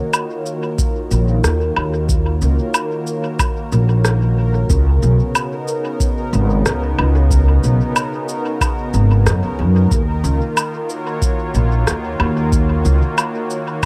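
A straight 4/4 groove at 92 BPM opens this deep, hazy ambient dub excerpt in Eb minor, as electronic shaker, woodblock and rim click with dub echo arrive at 0.1 seconds, joined by an overdriven analog kick at 0.8 seconds and an up-front, woody, growly pizzicato upright bass at 1.1 seconds. A smooth, detuned sawtooth pad with chorus and tremolo holds sustained chords from Ebm9 to Db9sus4 and back, while a resonant, bubbling stepped-filter texture with chorus and built-in reverb hovers on Bb4 in the background. Light reverb frames the whole, with the shaker, woodblock and rim click carrying a tape-warm, small-room character.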